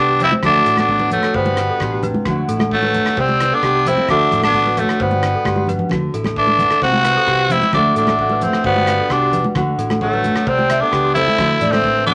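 Highlife guitar band groove at 132 BPM in D mixolydian, sunny and danceable, where a raspy, up-front tenor saxophone carries the melody over a distant, growling alto saxophone second line, bright fingerpicked flamenco guitar with finger squeak, a delicate, slightly out-of-tune celesta playing bell-like arpeggios, a dark, round fingered electric bass, background congas with thick skins, and a dry, damped 70s drum kit that enters at 0.2 s and plays a fill at 5.5 s, all cycling through Dadd9, Gmaj7 and C in a moderate studio room.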